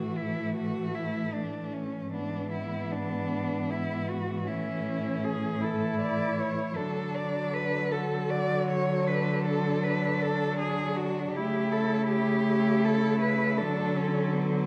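Four bowed cellos begin together in this solemn, melancholic classical excerpt for cello ensemble, a lyrical A major passage in 12/8 at a slow, rubato 52 BPM. Up front, a rich-toned cello carries the melody with vibrato, soft attacks and expressive portamento, over a dark, woody second line, a smooth, even accompaniment, and a distant bass cello whose vibrato and portamento make it expressive too. A wet recital hall reverb surrounds the ensemble and a faint mains hum sits underneath, with the melody stopping at 14.3 s just before the other cellos end at 14.7 s.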